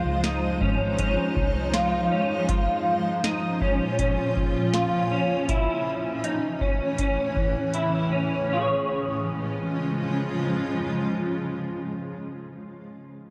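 A clean, dark electric guitar picks up-front arpeggios through ensemble chorus and delay over a cloudy, evolving granular pad, while a round, foam-muted bass drops out at 2.1 seconds and a booming analog drum machine with deep kick, tonal snare and metallic hats stops at 7.9 seconds, leaving this ethereal, blissful 80 BPM dream pop excerpt in Db major to drift through a lush hall reverb as the chords move from Dbmaj7 through Bbm and A back to Db.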